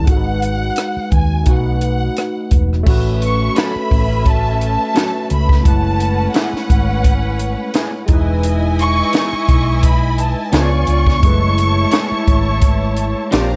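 A dry, compact cocktail drum kit sits up front in this lush 1970s-style soul excerpt. Its punchy kick, high-tuned snare, rim click, hi-hat and dark cymbals carry a lightly swung groove. Beneath it, a round, amped hollow-body short-scale bass is played fingered, while an overdriven tine electric piano, barky and gritty through a combo amp with analog chorus, supplies the chords. A studio violin section carries the bittersweet, cinematic melody from the start with a soft attack, vibrato and a smooth top, and at 2.9 seconds a clear, focused string section joins from a distance on a second line. From 3.6 seconds a twangy, slightly broken-up guitar riff through a small old amp plays in the background alongside a ringing, metallic vibraphone with fast motor vibrato, which drops out and returns at 10.2 seconds, all within a small room reverb over extended chords such as A69, Emaj7 and C#7b9.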